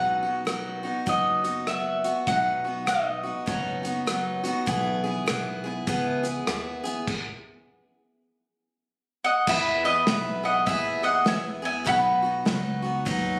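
Easygoing and down-home, this swung honky-tonk and classic country clip pairs a round, double-stringed mandolin melody with a bright, full-bodied dreadnought guitar that sits up front, finger squeaks and all. A woody, thumpy upright bass and a dark, smooth country drum kit with a tight kick and a medium-tuned snare fill out the groove, and the band stops at 7.1 seconds before the mandolin returns at 9.2 seconds. It sounds like a phone recording made in the room, with light reverb and compression.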